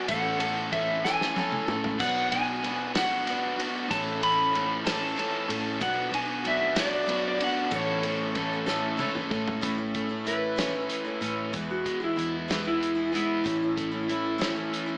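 Folk rock with a heartland rock lean, this short excerpt rolls along at 63 BPM in a relaxed 6/8, carrying an open-road, warm mood in A major. A shimmering, octave-doubled twelve-string acoustic guitar supplies bright picked accompaniment with audible finger squeak, while a double-tracked, compressed overdriven electric guitar sits up front playing a riff. Underneath, a dark, round hollow-body short-scale electric bass and a loose indie drum kit with a tight kick, medium-tuned snare and rolled-off top hold the groove, with a grainy egg shaker faintly present until 9.4 seconds. The chords move between A and B minor before shifting to E and back to A, and drum fills arrive at 1.0 and 8.7 seconds. An electric slide guitar, slightly broken-up and fed through analog delay, carries the melody throughout and takes a solo from 9.6 seconds. Moderate studio reverb and a small-speaker character give the mix a compact, lived-in sound.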